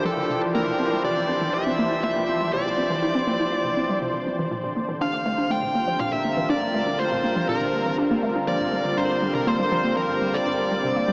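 A lush, thick pad with chorus opens this hypnotic, expansive stretch of sequencer-driven space music, holding airy, bright sustained chords above a deep, round sine sub bass that sits very quietly underneath. Within a fraction of a second a dark, overdriven electric lead guitar enters up front with a smooth picked melody through tape echo, while a hollow, bouncy square-wave pluck plays a warbling, vintage-toned riff treated with chorus and the same echo. A filter sweep runs over the synth arpeggio sound for the entire passage, adding motion to the steady 121 BPM pulse in straight 4/4. The harmony moves from Dm7 through C and Bb to Gm7, with the tuning set slightly low at A4 = 438 Hz. A huge reverb with an 8.9-second tail soaks the dreamy mix, yet the overall sound has a small-speaker character, and the piece is cut from a longer work.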